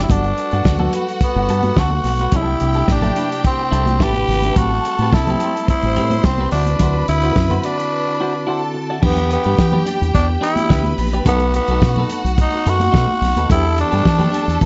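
A straight 4/4 disco groove at 108 BPM in E minor drives this danceable clip: a dry, muffled soul drum kit with a fat snare lays down the beat, a round, punchy fingered bass sits up front with a raspy, growling tenor saxophone melody, lush bowed strings carry a second line, and a twangy clean electric guitar, a piping tonewheel organ with key click, chorus vibrato and slow rotary speaker, and bright, high-tuned congas sit in the background, with a small-room sound and dark production, a break at 7.9 seconds, and a move from chords such as Gmaj9 and Am9 to Em7 and B7 at 9.0 seconds.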